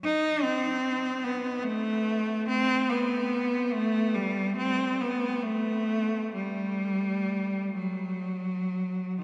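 Set in a wet cathedral reverb, this short, mournful and lonely classical fragment in 6/8 features a single up-front bowed cello, rich and smooth with vibrato, playing an even, freely expressive rubato line for 9.2 seconds.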